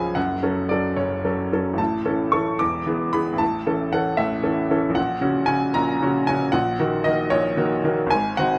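Passionate and stormy, this brief fragment of a romantic character piece for solo piano unfolds at 76 beats per minute in 6/8, its pulse pulled and pushed by free rubato. A bright upright piano carries everything across the full 8.6 seconds, reaching from deep C#1 in the bass up to D6. Its tone is brilliant and woody, slightly detuned, with audible action noise that makes the instrument feel intimate and up front. The harmony moves from F#m through A and E7 back to A, then shifts to Gb/Bb at 5.0 seconds and settles on Ebm7/Bb at 6.5 seconds. Close, detailed microphones and light reverb keep the piano present, though lossy compression artefacts roughen the sound, and the passage is cut from a longer work.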